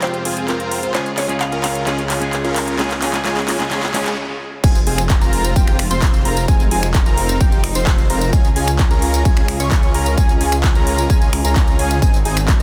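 A huge, airy supersaw lead drives this anthemic, euphoric festival progressive house cut in F minor at 130 BPM, pumping and filtered over floating background strings under a filter sweep, a big-room kit with metallic hats playing a fill, a woody mallet-like pluck, a clean hollow-body electric guitar and a very quiet riser through the build-up, before a brief stop at 4.2 s gives way at 4.6 s to a drop where a punchy, up-front kick, a thick, saturated detuned saw bass and a bold, mellow unison lead playing arpeggios with vibrato join in.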